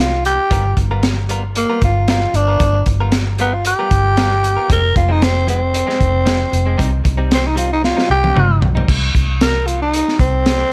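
A growling tenor saxophone carries the solo through this brooding, smoky soul-blues excerpt, its breathy subtone, raspy edge and scooped notes sitting up front with a mellow vibrato. Beneath it, a vintage muted fingered electric bass gives a round, punchy, foam-muted low end. A crunchy breakbeat kit plays in a small room, with dark cymbals, a high-tuned snare, a tight kick and a saturated, rolled-off top. A clean electric guitar, recorded direct and compressed, adds quieter picked stabs bathed in spring reverb from 0.5 to 8.9 seconds, as the harmony moves from a G7#9 through Fm and Cm before the chords fall away. The drums play a fill starting at 7.8 seconds, and the overall sound is dry and close, with a straight-eighth feel that carries a light swing.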